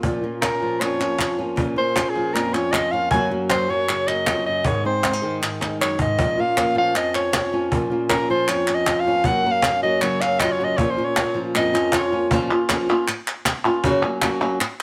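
Closely miked with light reverb, this dramatic, intense flamenco excerpt puts a smooth-topped, jazz-style soprano saxophone solo with light vibrato up front until 12.3 seconds, over a fingerpicked flamenco guitar melody with fresh strings and finger squeak, a second guitar playing tape-echoed stabs in the background, a snappy, band-limited cajon with hard hands and a fill at 5.6 seconds, and crisp, saturated palmas hand claps.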